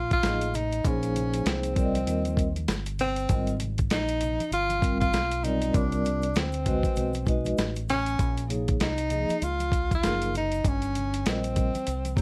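A breathy tenor saxophone leads this smoky, nocturnal jazz-hop cut, carrying an up-front solo melody in a mellow, subtone jazz style with scooped notes, vibrato and a smooth top. Beneath it, a deep dub fingered electric bass sits dark and round, while a gritty, compressed, tape-warm sampler-style drum kit pushes a thumpy kick, a medium-tuned snare and hi-hat to the front with a swung sixteenth-note feel. A vibraphone played with soft mallets enters at 0.2 seconds, ringing and metallic with a medium motor vibrato as it supplies the accompaniment. Congas and a tube shaker add a very quiet layer of close, dry hand percussion. Light reverb and a bed of vinyl crackle frame the excerpt as it drifts through jazzy minor-ninth and major-thirteenth harmony, from Fm7 to a closing Gm7b5.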